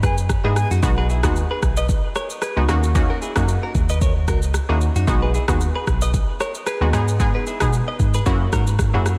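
A breathy flute note drifts in the background for the opening 0.7 seconds of this romantic, joyful afrobeats piece. Beneath it sit a twangy, compressed clean electric guitar riff with subtle chorus and ambient delay, a mellow tine electric piano carrying the bass up front, and an electronic afro-pop kit of deep kick, rim click and shaker with a lightly swung feel. At 0.4 seconds a round, nasal sawtooth pluck with chorus and a filter sweep joins as accompaniment, while the chords move from G#m through B6 and D#m7 to close on F#7, all under light reverb with a digital sheen.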